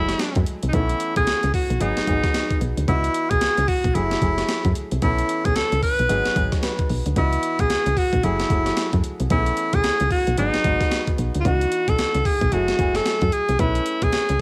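A bright alto saxophone plays an up-front jazz-style solo with light vibrato and scooped notes over a polished grand piano accompaniment and a round, dark FM bass, joined at 0.1 s by a gritty, compressed sampler-style breakbeat kit with a thumpy kick, setting up a punchy, bouncy new jack swing R&B groove at 112 BPM in C# minor with swung sixteenths that cycles through F#m9, B9sus4, G#m7 and C#m11, with a piano fill at 6.4 s and a cassette-tape character on the piano and drums of this home-recorded cut.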